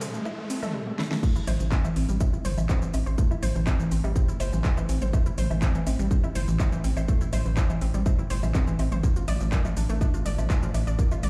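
A brief electronic riser and a build-up open this dark, dramatic melodic techno excerpt at 123 BPM in A minor, with a warbling, lo-fi sawtooth pluck playing arpeggios through chorus, cassette-tape grit, delay and sidechain pumping, over a tight, punchy sequencer bass and an overdriven deep house kit with a fat snare, metallic hats, claps, shaker, toms, woodblock and crash. A punchy, up-front electronic kick enters at 0.3 seconds to drive the groove, and a drum fill leads into the drop at 1.2 seconds, where the harmony moves from A minor toward B-flat. From 3.1 seconds a very quiet, detuned analog drone sustains beneath, all heard as if played on a big sound system in a bare room with large studio reverb.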